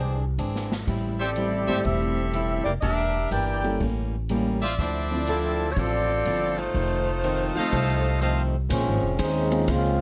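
Swinging and sultry, this big band swing cut at 123 BPM sets a smooth-topped saxophone section with plate reverb on the melody over woody pizzicato upright bass, a boxy picked acoustic guitar, a dark, mellow grand piano and a polished, airy drum kit with a punchy kick, while a brilliant trumpet section adds stabs and a clear trombone section steps forward for a solo at 8.7 seconds, captured by close, detailed microphones in light reverb.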